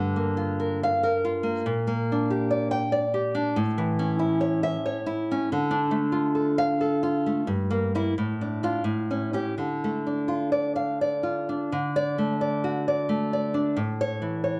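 Melancholic and wistful, this brief fragment of a romantic piece for solo classical guitar moves in a flexible, rubato three-beat lilt, the nylon-string guitar sitting up front with a warm, fingerpicked classical tone and audible finger squeak. The harmony drifts from Gm7 through A and Dm before turning to a brighter D at 11.7 seconds, where a new section begins and closes on A. A moderate recital hall reverb surrounds the playing, and the worn old cassette tape lends a warbling pitch drift that deepens its faded, nostalgic feel.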